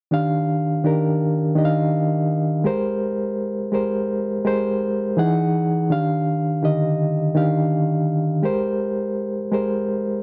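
A barky, reedy electric piano, lightly overdriven and shimmering with fast tremolo through its built-in speakers, plays alone up front in this romantic, smooth soul excerpt, moving through rich ninth chords from Ebmaj9 to Abmaj9 with a brief turn to Emaj9, captured in a dry, close 1970s-style studio sound with light reverb.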